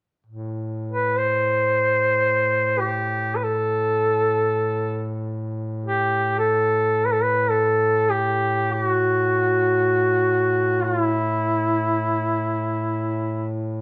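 A clear duduk carries the melody up front from 0.9 seconds, singing between E4 and C5 with a light vibrato and a distant, roomy quality. Beneath it, a warm duduk holds a low drone on A2 from 0.3 seconds to 13.8 seconds, its scooped notes giving the foundation a bending character. This short passage of Caucasian folk music, cut from a longer piece, feels longing and mournful, with both duduks played in a folk style. A moderate recital hall reverb surrounds the pair, captured by close, detailed microphones. The melody falls away at 13.5 seconds, just before the drone ends.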